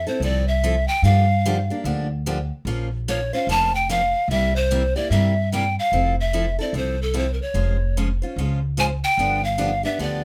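A breathy bamboo pan flute carries the playful, charming melody up front, its tongued notes showing chiff, vibrato and lifted highs, in this F major acoustic string swing piece in the jazz manouche style at 147 BPM. A woody, thumpy upright bass with gut strings plays pizzicato up front alongside it, while a bright, picked steel-string acoustic guitar comps from 0.1 seconds. Light reverb surrounds the trio, and at 5.9 seconds the music moves into a second section that shifts from Fmaj7 through Dbmaj7/F to G7 before this short excerpt of a longer piece is cut off.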